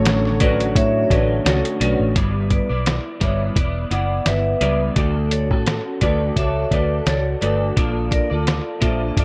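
A lightly reverberant, lo-fi sound frames this dreamy, sunny indie-pop and bedroom-pop excerpt with a gently swung feel, where a mellow, clean tine electric piano and a smooth, warbling, detuned analog pad sit in the background at the start and both stop by 2.2 seconds, leaving a slightly broken-up electric guitar through a small old amp with ensemble chorus and vibrato, a dark, round, foam-muted fingered electric bass, an up-front, muffled sampler-style drum kit with a thumpy kick and fat snare, and a ringing, metallic vibraphone carrying a second line through lush chorus and tape echo.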